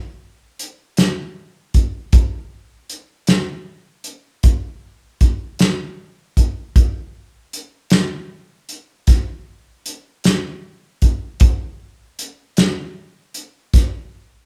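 This slow, soulful and mournful blues moves in 12/8 at 52 BPM, counted in dotted quarters, and comes from a longer piece. An acoustic soul drum kit of hi-hat, kick and snare plays from 0.6 to 13.9 seconds, sitting up front with a fat snare, a tight kick and a warm, rolled-off top. Its mid-forward, small-room character carries light reverb, giving the feel of a band playing live together in one room.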